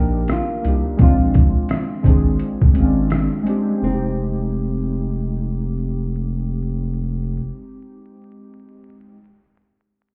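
Lo-fi hip hop with a nostalgic, hazy mood, heard as a short excerpt that sounds muffled through a wall, with club reverb and vinyl crackle. A woody, fingerpicked flamenco guitar carries the melody over warbling, detuned synth keys with chorus, while a deep, saturated sub bass sits up front beneath them. A pitched-down, sampler-style drum kit with a thumpy kick, hi-hat, rim click and gritty 12-bit grain plays only from 0.3 to 3.7 seconds, before the harmony settles on Fm9 at 3.8 seconds.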